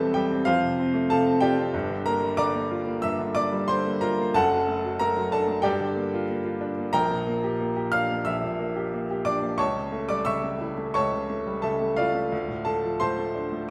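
A lone baby grand piano opens this brief romantic character piece, its tone clear and intimate, with the soft clatter of its action audible up close. The mood is brooding yet bittersweet, and the phrasing breathes with rubato, so the beats fall unevenly and the pulse stretches and gives. The harmony moves from F through Gm7 and D/F#, settles back on Gm7, then leans into darker ground with Gm/Bb and A7/C# before arriving on Dm at 12.3 seconds. The piano spans a broad range, from deep bass notes at E1 up to F6, and sits close to the listener with a natural, unvarnished character. A wet stone-room reverb lends a lingering halo around the instrument, and the passage ends at 13.7 seconds as a fragment of a longer work.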